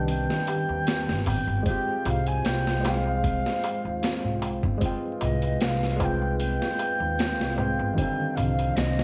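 Melancholic and dark, this 76 BPM trip hop excerpt sets an airy, unsteady wooden flute melody with vibrato and tape echo over a felt-muted upright piano with audible action noise and harmonic tremolo, a detuned, chorused analog pad, a delicate, tinkling music box in the background, a woody pizzicato upright bass with tube saturation, a gritty, pitched-down boom bap drum kit up front with a thumpy kick and high-tuned snare, and a crisp metal-shell darbuka further back, all swung lightly on the 16ths around Cm(add9) and Fm(add9) chords, with a cassette recording, vinyl crackle and a dulled top end lending a lo-fi home-recorded haze.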